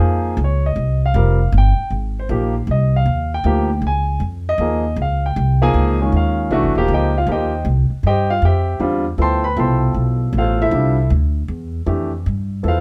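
A moderate studio reverb frames this searching, spiritual jazz waltz, cut from a longer piece, as a band plays live in one room: an intimate concert grand piano with audible action noise and a smooth, vintage tone comps up front over a dark, woody pizzicato upright bass with steel strings, drifting between Dbmaj9#11 and Cm before settling onto Fmaj9 at 8.4 seconds.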